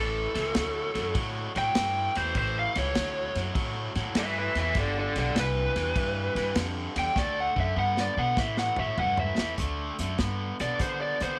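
A small, roomy sound frames this soulful, gritty electric blues shuffle at 100 BPM in D mixolydian, where a dark, overdriven lead guitar through a small cranked amp sits up front soloing until 9.6 s over a bright, picked overdriven riff guitar, a woody, thumpy pizzicato upright bass and a vintage drum kit with dark cymbals and a tight kick that enters at 0.4 s and plays a fill from 7.2 s, all in a swung 4/4 excerpt cut from a longer piece.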